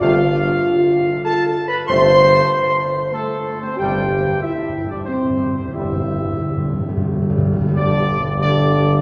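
Classical brass writing in a stately 3/4, this short passage cut from a longer piece sounds triumphant and regal. A dark, punchy trumpet section carries the melody, tight and up front, while a dark French horn section with light vibrato and soft attacks holds sustained chords beneath it. A very quiet trombone section adds a mellow layer of chords, and a clear tuba anchors the bass on a single low G. Timpani played with medium mallets strike at the opening, then return at 3.8 seconds with a fill that runs to 7.8 seconds as the harmony moves from F over G to C over G before settling on a Gsus2. A long, wet cathedral reverb places the ensemble further back in the room, and lossy compression artefacts colour the sound.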